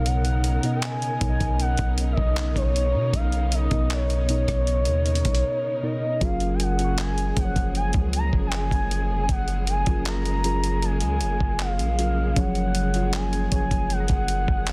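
A long, deep 808-style bass sits up front in this tender, romantic contemporary R&B piece, its mellow sine tone decaying under a slow 78 BPM groove in F# major, cut from a longer work. A dusty, sampler-style drum kit enters at 0.1 seconds with a thumpy kick, hi-hat, rim click and handclaps, its compressed, gritty character sharpened by soft clipping on the snare. Above it, a smooth gliding lead carries the melody with portamento, vibrato, chorus and digital delay, while muted, felt-like synth keys with a filter sweep add intimate chorused accompaniment and a dark, woody string section holds lush, distant bowed chords. The harmony moves from Bmaj9 to F#maj9 at 6.2 seconds, just after a brief break, and from 6.6 seconds a very quiet, round, wave-folded pluck adds a gentle chorused texture in a high register. The sound is set in a digital ambience with a dense, heavily limited modern master.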